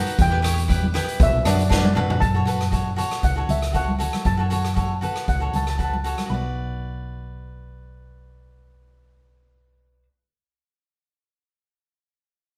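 A mellow, shimmering steel pan carries the melody of this bittersweet, moody calypso in B minor at 117 BPM, over a crisp, picked cavaquinho and a round, dark hollow-body electric bass sitting up front. A boomy, airy street-band drum kit drives the groove with a drum fill at 1.7 seconds, joined by damped, thin-skinned congas in the background, before the drums drop out at 6.3 seconds and the congas follow around 6.5 seconds. The harmony moves from Em to Bm and F#m before settling back on Bm, all played live in one room with a wet studio reverb in this short cut from a longer piece.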